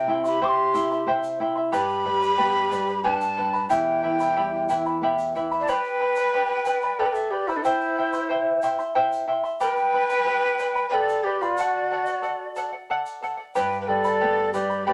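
Wistful and earthy, this Andean folk excerpt in 3/4 at 91 BPM sets a breathy, woody large quena with a crisp, chiffy attack up front on the melody, a distant, reedy bamboo pan flute with vibrato on the second line, and a shimmering fingerpicked charango with doubled strings, while a fingerpicked flamenco guitar with finger squeak plays until 5.7 s and returns at 13.6 s, a grainy egg shaker sits far back, and a wet studio reverb surrounds the ensemble as the chords move from C through G, Em and D.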